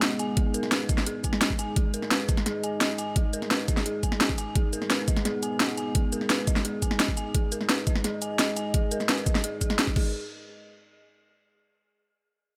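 Overdriven, up-front drums drive this aggressive, futuristic dark technical drum and bass excerpt at 172 BPM in G# minor, with a cracking snare, bright hats, shaker and crash joined at 0.4 s by a knocking electronic kick, while a deep, wave-folded analog pad holds a sustained G#m chord with chorus and sidechain pumping and an eerie, inharmonic FM bell plays mellow arpeggios through chorus, sidechain pumping, a low-pass filter and dub echo, the pad and bell both stopping at 10.1 s in a light reverb.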